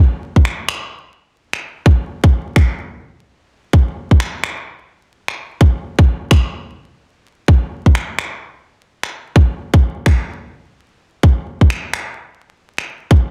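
The rhythm runs at 128 BPM in 4/4 with a 62% swing on the sixteenths, giving this UK garage excerpt a bouncy, skippy feel. An electronic kick drum carries the beat from 0.4 s, tight, layered and up front, with a tape-warm character and the air of a large room around it. Electronic finger snaps join at 0.5 s, sitting lower in level than the kick yet also up front, also layered and re-recorded in a large room, with soft clipping roughening their snare-like crack. Both parts run through a single section until just before the 13.3-second mark. The master is dense and heavily limited, dry with little reverb, and a layer of vinyl crackle lends the whole a dusty, worn surface.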